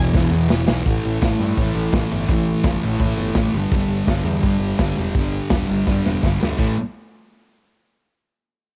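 A raw, swaggering home-cassette sound with light reverb frames this brief garage rock excerpt, where a thick, double-tracked fuzz guitar riff sits up front over growling overdriven picked bass and a dark, punchy vintage drum kit, with drum fills at 0.1 and 5.9 seconds and power chords moving through E5, A5 and G5.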